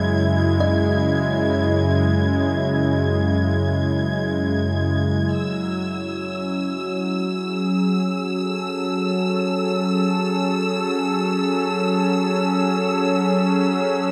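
A detuned, warbling analog pad sits up front in this serene, melancholic ambient excerpt, holding sustained chords with a slow attack and subtle chorus as the harmony moves from C#m/F# to F#m9 at 5.3 seconds. Alongside it, a mellow, evolving analog drone with pulse-width modulation and chorus hums in the background, while a distant, lush violin section adds bowed texture with expressive vibrato high above. A very quiet, woody kalimba rings out airy arpeggios from 0.6 to 3.2 seconds, and the piece floats unmeasured in a huge, wet reverb.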